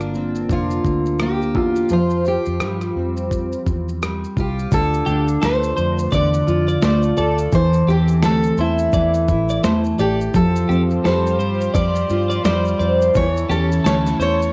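Two up-front, full-bodied fingerpicked steel-string acoustic guitars lead this wistful, reflective acoustic pop excerpt in D minor at 85 BPM with a lightly swung 16th-note feel, one carrying the melody through cassette tape, plate reverb and analog delay while the double-tracked other fingerpicks the accompaniment over a dark, round, foam-muted electric bass and a gritty, compressed sampler-style drum kit with a thumpy kick and a rim click. A very quiet, grainy egg shaker joins at 4.7 seconds and a clean, compressed twelve-string electric guitar adds arpeggios from 5.1 seconds, before a distant, soft-attack bowed string section floats in with sustained chords at 10.3 seconds. The whole has a dusty home-cassette character in a moderate room, moving from Bbadd9 and Fsus2 through Dm and Am to close on A.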